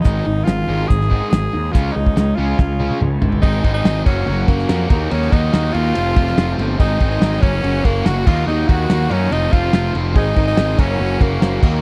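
Classic rock at 143 BPM in a straight 4/4, this brooding, driving cut from a longer piece is led by a raspy tenor saxophone whose gritty, forceful solo line carries vibrato and a slapback echo. Two picked electric guitars play riffs throughout, one bright, distorted and scooped, the other overdriven and set in the background, while an up-front fuzz bass anchors the low end. A cloth-damped, thuddy drum kit with dark cymbals, a tight kick and a rolled-off top drives the groove, with a fill from 2.6 to 3.4 s leading out of the opening passage. A bright tonewheel organ holds very quiet sustained chords through a slow rotary speaker, and a barky, reedy electric piano with fast tremolo slips in at 10.1 s for the closing moments. The harmony moves through Ab, Gb, Ebm and F, all captured in a dry, close 1970s-style studio recording.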